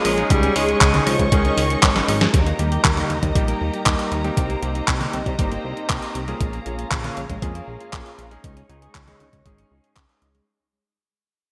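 Italo disco with a melodramatic, danceable mood, this short cut from a longer piece opens with an edgy alto saxophone phrase, played with vibrato and carrying a digital delay, that lasts only until 2.0 seconds. Beneath it, a dark, woody studio string section holds bowed chords with light vibrato and a soft attack, while a clear electric grand piano with a clangy low end plays stabs through subtle chorus and delay. A glossy, detuned synth bass built from pulse and sawtooth waves, with filter sweeps and chorus, anchors the low register, and a very quiet, clean fingered electric guitar traces arpeggios. A 12-bit drum machine sits up front with handclaps, hi-hat, a medium-tuned snare and toms bathed in gated reverb, joined by a thumpy electronic kick from 0.3 seconds. After a drum fill, the chords move through Eb, Cm7 and Bbm7 back to Dbsus2 as the music fades out from 2.3 seconds, all framed by a lush hall reverb and bright 1980s-style digital production.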